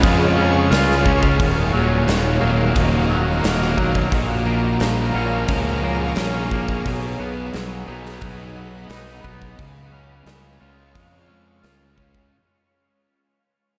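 A dark, round fuzz bass sits up front, its overdriven fingered lines anchoring this hazy, brooding shoegaze and dream pop fragment cut from a longer piece. A big acoustic rock kit with a punchy kick, medium-tuned snare and hi-hat rings out in a bright stone room. Behind them, a thick fuzz guitar, a hollow-body guitar with overdrive and reverse reverb, and a clean, twangy guitar picking delayed arpeggios weave a dense, layered backdrop. A double-tracked sludgy guitar riff appears very quietly only until 1.4 seconds, while a shimmering, ethereal pad with an octave-up sheen and detuned, granular texture holds sustained chords high above. The harmony moves from Db through Ebmadd9, Bbm7 and B6 before returning to Db, and the whole passage, soaked in a huge ambient reverb, fades out across its 12.3 seconds.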